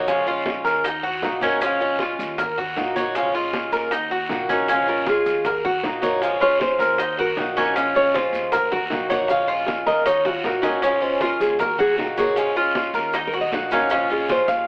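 A fingerpicked, classical-toned nylon-string guitar, bathed in plate reverb, comes up front at 4.9 seconds to take a solo over this danceable Cuban son and guajira groove, which alternates between two minor chords. Beneath it, a metallic, double-strung tres plays picked arpeggios beside a bright, boxy, swing-style acoustic guitar, while a woody, growly pizzicato upright bass sits low in the mix. Round, saturated bongos, low-tuned congas struck with hard hands, a raspy guiro and grainy maracas stay in the background, with a drum fill at 10.3 seconds, and the whole cut has a moderate studio room and a telephone-like sound.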